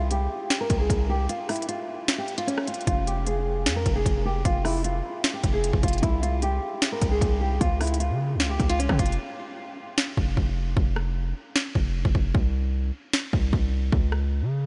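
A half-time trap groove drives this brooding, menacing hip hop excerpt, with a crisp electronic kit of hard-clipped kick, sharp snare, rim click and hi-hats sitting up front alongside a punchy, heavy 808-style bass that decays after each fast attack. A fingerpicked classical nylon-string guitar carries the melody through a filter sweep and tape echo until 9.2 seconds, when the hats also fall silent, and brief breaks interrupt the groove from 1.3 seconds and again at 9.2 seconds. The dreamy mix is soaked in a huge ambient reverb with a dark, rolled-off top end.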